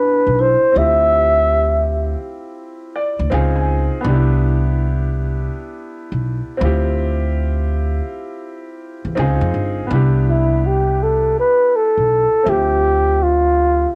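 Jazz-hop with a cool, smooth swing, where a dark, breathy flugelhorn and mellow soft-mallet vibraphone open together over a polished upright piano and a woody pizzicato upright bass, the piano adding a fill at 2.6 seconds before the flugelhorn returns for an intimate, whispered solo from 9.9 seconds, all carrying the light reverb and cassette tint of a home recording.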